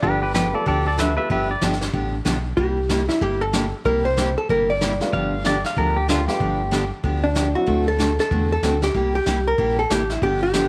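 A swinging, down-home western swing excerpt opens at 188 BPM in G mixolydian with the whole band at once: a brushed vintage drum kit with a punchy kick, a round, deep analog bass, a full-bodied picked dreadnought acoustic guitar, a woody upright piano in the background, a fingerpicked pedal steel with slide and a brief opening phrase from the hollow-body jazz guitar. The dark, clean hollow-body jazz guitar returns to carry the melody up front from 2.6 seconds, and the steel returns as a second line at 5.1 seconds alongside the mellow piano, over chords moving between G9, C7 and D9. Light reverb and a small room ambience keep the sound intimate.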